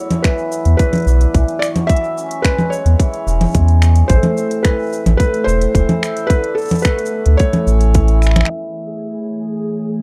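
Pastoral and hopeful, this short excerpt of folktronica moves at 109 BPM in a straight 4/4, with a slightly flat tuning of A4 = 439 Hz. A felt-muted upright piano carries the melody in a soft, intimate voice with audible action noise, while a hammered, shimmering cimbalom rings out arpeggios through tape echo that also colours the piano. Underneath, a deep, round sub bass sits up front beside a tight, overdriven electronic kick, and an organic electronic kit of congas, finger snaps, crisp hi-hat and shaker adds filtered, overdriven texture re-recorded in a large room. The harmony moves from Esus2 through C#m/E, Amadd9, D5 and A before settling on Amaj7 at 8.5 seconds, by which point the drums, bass and piano have fallen away, and a warbling, detuned analog pad enters with chorus and a filter sweep. A faint, sparkling granular layer with an octave-up shimmer joins at 8.9 seconds, bathed in its own reverb, while the cimbalom rings on to the end. 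The overall sound is dry and close, in the manner of a 1970s studio.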